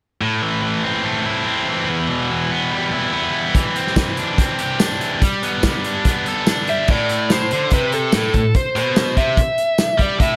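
A small room's light reverb frames this restless, cool indie rock excerpt in A minor at 144 BPM, where a bright, scooped high-gain electric guitar drives a distorted riff through Am, Em, Cadd9/E and Gadd9 from the start, a loose acoustic drum kit with a tight kick, medium-tuned snare, hi-hat, crash and tambourine enters at 3.5 seconds, and a bluesy overdriven lead guitar with a warm, picked tone adds an up-front melody from 6.7 seconds.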